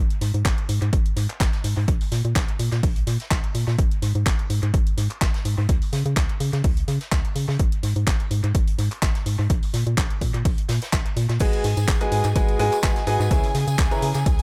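Piano house at 126 BPM in G# minor, soulful and energetic, built on a hollow, organ-like FM bass with sidechain pumping, an overdriven, punchy electronic kick up front, a tape-warm house kit of crash, handclaps and hi-hat soaked in dub echo, and a very quiet, distant brushed kit, until at 11.4 seconds a brilliant grand piano riff, lush bowed symphonic strings and a dry background tambourine arrive over G#m7 moving to C#m7 in an echo-heavy small-room mix.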